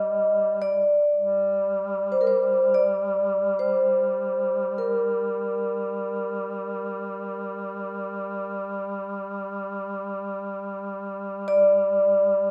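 Longing and solemn, this Caucasian folk lament in G minor drifts in free time, tuned to A4 = 442 Hz, in a 12.5-second portion cut from a longer piece. A metallic, ringing vibraphone struck with medium mallets carries the melody up front between Bb4 and Eb5, its slow motor vibrato shimmering. Beneath it, a mellow duduk holds a distant drone on G3 in folk style, with vibrato and scooped notes, both parts sitting in a moderate scoring-stage reverb of about 1.5 seconds.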